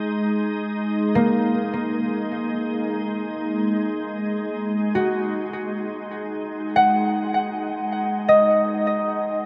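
Ambient in free time and tuned to A4 = 442 Hz, this reflective, spacious excerpt from a longer piece opens with a calm, detuned, sine-toned organ-like drone with ensemble chorus and its own reverb, sustained on a D#madd11/G# chord, before a mellow, ringing, fingerpicked concert harp enters up front at 1.2 s with delayed arpeggios, all set in a vast, echoing space with an 8.5-second reverb tail and a cassette-tape character.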